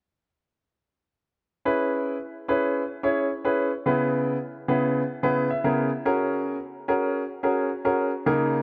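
A bittersweet yet energetic pop excerpt opens at 1.7 seconds with a warm, polished baby grand piano sitting present and up front in accompaniment, moving through C#m7, E/C# and F#add9/C# chords with a brief fill at 5.2 seconds, all bathed in a moderate plate reverb and the worn, warbling pitch drift of old cassette tape.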